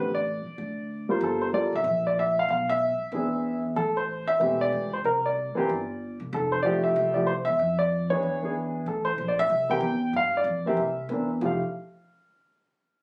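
A relaxed swing at 188 BPM in 4/4 drives this short jazz excerpt in F major, with chords that drift through Am11, Gm9 and Fmaj9. A polished, up-front upright piano carries the melody, while a woody, thumpy pizzicato upright bass on steel strings sits beneath it at a lower level. Both play from the start until 11.6 seconds, captured on a phone in a club with light reverb and the ambience of the room around them.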